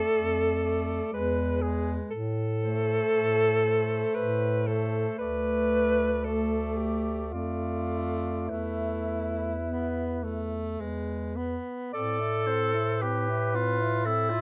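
Yearning and solemn, this rubato classical excerpt in A minor for single-reed quartet moves in a slow 3/4 at 51-62 BPM, with a warm, distant clarinet carrying the melody, a clear, up-front alto saxophone with vibrato singing the second line, a tenor saxophone with vibrato filling in the accompaniment, and a dark, smooth-topped bass clarinet with soft attacks anchoring the bass, all in light reverb as the harmony passes from Esus4 through E to settle on Am at 11.9 seconds.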